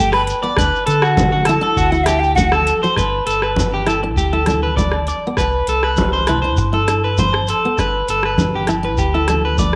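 A breathy, hollow flute melody opens this sunny, carefree highlife excerpt at 100 BPM in G major over fingerpicked full-bodied acoustic guitar, up-front slightly broken-up electric guitar arpeggios with slapback echo, and dark, round fingered dub bass, while a booming tape-warm analog drum machine, ringing background agogo bells, grainy shekere and distant thin-skinned congas join within the first second, and the flute drops out at 2.5 seconds, leaving the band to carry on under a moderate spring reverb.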